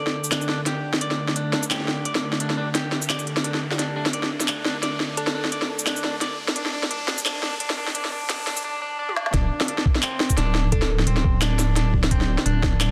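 A dense, heavily limited mix with light digital ambience carries this heavy, cinematic half-time drum and bass at 173 BPM, swung on the sixteenths, where a tense, detuned string-like drone pumps under sidechain beneath a bright, twangy clean electric guitar playing arpeggios through dub echo. An up-front organic electronic kit of woody snare, smooth hats, shaker, handclaps and toms drives the build-up, as a very quiet riser and a filter sweep carry the tension toward the drop, and a round, tine-like thumb-piano pluck touches a mellow A4 twice in the background with chorus and tape echo. After a drum fill at 9.1 seconds, the drop at 9.3 seconds brings in a deep, dark wobble bass on D1 and a gritty, thumpy, pitched-down kick.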